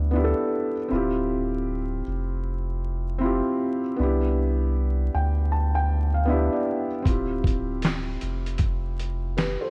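A felt-muted upright piano, soft and mellow behind a low-pass filter, moves between a rootless Cmaj9 and Dm11 and plays a fill from 4.7 to 7.1 seconds in this hazy, nostalgic lo-fi hip hop excerpt at 78 BPM with a swung 16th feel in D dorian, over a deep, round dub sub bass, until a gritty, compressed sampler-style drum kit with thumpy kick, fat snare, hi-hat and handclaps arrives at 7.1 seconds, the whole mix sitting in light reverb and vinyl crackle.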